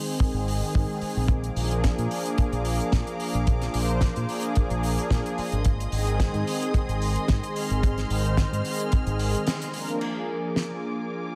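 A smooth, detuned sawtooth analog pad sits up front through this sunny, groovy nu-disco excerpt, its soft-attack, mellow chords carrying chorus and delay in Bb mixolydian at 110 BPM in 4/4 with a light 16th-note swing. Beneath it, a tight, dry acoustic kick with a rolled-off top anchors the pulse, joined by a damped 70s kit with dark cymbals, a fat snare, hi-hat and crash, both set in studio reverb. A bright, punchy fingered electric bass runs through an envelope filter and tube saturation beneath the Ab and Bb7 chords. From 1.3 seconds a woody, bowed studio string section adds sustained high chords with light vibrato, low-pass filtered and pumping from sidechain compression. A brief break at 9.5 seconds lands on a band accent, and at 10.0 seconds a new section begins where pad and strings hold Bb7 in a small room ambience as the kit plays on briefly.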